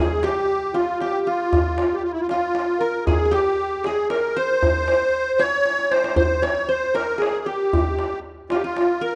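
A reedy musette accordion leads this hypnotic, soulful Arabic maqam ensemble piece, carrying the melody between E4 and Db5+25c with a shimmering musette tuning and a boxy, up-front presence. Beneath it, a mellow acoustic qanun plays a second line from F4 to Db5+25c, its fingerpicked triple strings giving a bright edge while sitting further back in the mix. A clay-shelled darbuka with natural skin enters at 0.2 seconds, sounding large and deep under hard hands, and a drum fill arrives at 5.7 seconds. The music moves at 116 BPM in a straight 3/4 in C maqam hijaz, all within a single section that is cut from a longer piece. Close, detailed microphones and a moderate recital hall reverb lend the ensemble both clarity and a sense of space.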